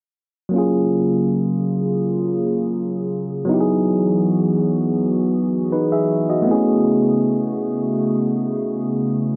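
A bright, bell-like tine electric piano with a barky bite sits up front from 0.5 s in this dreamy, tender R&B fragment in free time, moving through Gbmaj9, Emaj9 and Amaj9 chords while a hollow, flute-like pad with chorus and a slow attack enters at 0.8 s to hold mellow sustained chords, all under light reverb, a filter sweep and a dry, gritty low-passed character tuned to A4 = 439 Hz.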